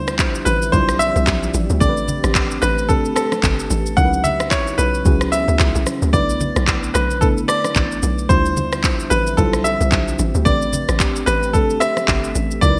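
Amapiano at 111 BPM with a swung sixteenth feel, hypnotic and soulful, where a brilliant, up-front grand piano carries the melody through digital delay over a round, warbling FM electric piano with chorus, a very quiet detuned ambient pad holding dark sustained chords, a hollow, bouncy log drum bass, an electronic afro-pop kit with deep kick, handclaps, rim click and shaker in gated reverb, and very quiet close-miked bongos and congas, all moving through Dm11, Am11, C#m11 and Bm7 in a bright 1980s-style digital production.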